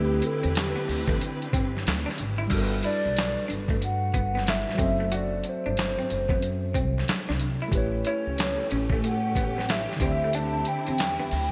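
Warm and relaxed, this swung neo-soul R&B excerpt sets a hollow, warbling clarinet-like synth lead with vibrato over a worn, slightly out-of-tune tine electric piano, a dark, lo-fi electric guitar tucked in the background through a small old amp, and a woody, growly pizzicato upright bass, while gritty, pitched-down boom bap sampler-style drums with a thumpy kick and gated reverb sit up front from 0.2 seconds, and a lush, distant bowed string section plays at the start and returns at 7.7 seconds, framed by a bright 1980s-style digital production with light reverb.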